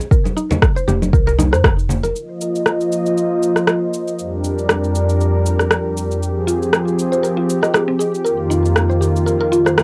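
Heard through a cassette home recording with a wet, tight booth ambience, this afro house fragment, cut from a longer piece, feels spiritual and earthy with a gently swung groove. Up front, a deep, produced electronic kick drum and electronic cabasa and rim click open the piece together with ringing acoustic congas played with soft hands in a small room, plus a round, woody FM bass that arrives at 0.9 seconds with tube saturation and sidechain pumping. A mellow, mallet-like synth pluck spins arpeggios over Ebsus2, its percussive FM tone carrying a noise layer, a moving notch, chorus and tape echo. At 2.1 seconds the opening band falls away, and a smooth, warbling vintage pad of detuned sawtooth and triangle takes over up front, its sustained chords drifting through Bbsus24/F, Gm7/F and Fm under lush chorus and sidechain pumping, with the cabasa and rim click still ticking alongside. The pluck returns at 6.5 seconds, sharing the closing Ebadd9/F with the pad and percussion.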